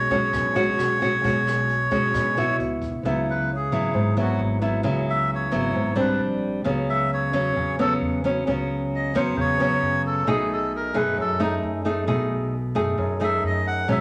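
A reedy, breathy melodica carries the melody up front over fingerpicked nylon-string guitar and a woody pizzicato upright bass in the background, setting a smooth, melancholic bossa nova mood in this fragment of a longer piece. A distant brush kit with a boomy kick and rim clicks plays only until 2.9 seconds, and from 3.0 seconds the dark, nasal melodica takes a solo through rich jazz chords over guitar and bass. A large studio reverb gives the sound a roomy, wet depth.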